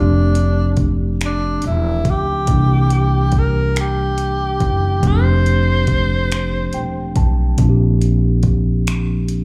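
Sensual and intimate, this slow six-eight R&B passage, cut from a longer piece, unfolds like a live club gig heard through the venue's PA, wrapped in club reverb. A breathy tenor saxophone carries the melody in a whispered, jazz-style solo voice, with vibrato, soft attacks and scooped notes, until it stops at 7.2 seconds. Beneath it, a mellow tine electric piano supplies clean, direct accompaniment over chords that move from F69 to C9 and back before settling on Bb69, and it slips in a fill from 6.3 seconds; both saxophone and piano carry a slapback echo. The upright bass sits up front, its pizzicato tone woody, bright and growly from steel strings. At 0.4 seconds a produced, electronic drum kit joins with finger snaps, metallic hi-hats and a soft kick, its sound re-recorded in a small room.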